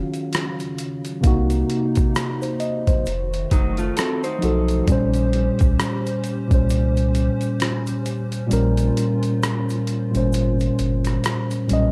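This lo-fi hip hop excerpt feels reflective and nostalgic, built on a swung groove cut from a longer piece. A mellow tine electric piano sits up front with cassette tape colouring, carrying the chords from the start, while a hollow, flute-like pad hangs dark and soft in the background, thickened by ensemble chorus. A gritty, compressed boom bap sampler-style kit with a thumpy kick, hi-hat and rim click drives the beat, joined by a grainy, very quiet tube shaker, and a round sine sub bass enters at 1.2 seconds. Between 3.5 and 4.9 seconds an electric guitar through a small old amp adds a brief, slightly broken-up second line with analog delay. The kick drops out at 8.5 seconds, and the whole recording carries a digital ambience with lossy compression artefacts.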